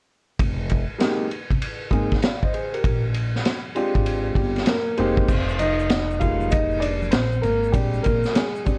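Smooth and relaxed, this jazz-hop clip swings over Fm11 and Bb13 chords, with a woody, pizzicato upright bass and a vintage drum kit whose punchy kick, high-tuned snare and dark cymbals pump in a small room up front. A mellow, long-sustaining grand piano enters at 1.0 seconds and takes a solo from 5.3 seconds, when ringing egg shaker and congas join quietly in the background. The whole sound is coloured by worn, warbling cassette tape with pitch drift and a moderate studio reverb.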